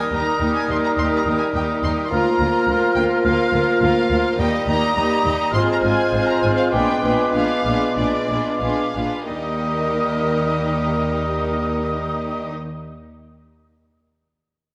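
Magical and mischievous, this whimsical, playful cinematic cue in Eb major moves at a straight 4/4 pulse between 88 and 106 BPM, slowing from 3.2 to 9.3 seconds before settling back on the home chord. A focused, vibrato-rich violin section carries the melody, joined by an airy, close-miked flute group, a mellow background clarinet and a second violin line, while a distant viola section and a vintage-toned solo bassoon fill in the accompaniment and a tight French horn section holds sustained chords. Dark, expressive cellos and smooth double basses enter at 0.1 seconds to anchor the bass, all bathed in a lush scoring-stage reverb.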